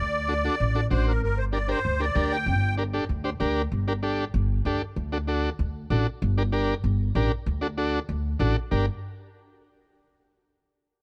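Cumbia with a danceable, driving pulse, this short cut from a longer piece moves in a straight four-beat feel over a dark, warm production with little reverb. A reedy musette accordion, shimmering from its musette tuning, carries the melody up front at the start, then drops out at 2.7 seconds. Beneath it, an acoustic upright bass with steel strings plays pizzicato in a low register, its woody, warm tone sitting prominently for nearly the whole clip. A vintage combo organ enters at 0.3 seconds with clean, buzzy accompaniment colored by light vibrato, also placed near the listener. The harmony circles between D7, G minor and D chords, with a brief shift to a bare G5 before settling back on G minor near the end.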